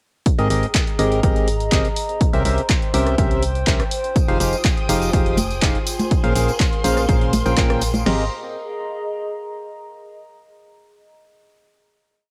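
A feel-good, joyful piano house piece at 123 BPM in Ab major, built on a punchy analog drum machine with an up-front four-on-the-floor kick, snare, crash, closed and half-open hats, rim clicks and handclaps, while a hollow, percussive organ stab riffs through chords from Abmaj9 to Bbm9 over a dark, organ-like FM bass locked to the chord rhythm. A warbling, nostalgic square-and-triangle pad with chorus and sidechain pumping drifts underneath from 0.7 seconds, and at 4.2 seconds a distant, bowed violin section adds sustained chords in the background alongside close, dry tambourine and congas. The drop ends around 8.1 seconds, leaving the lo-fi pad to hold a final Abmaj9 chord, with the whole piece carrying the light reverb and softened grain of a home cassette recording.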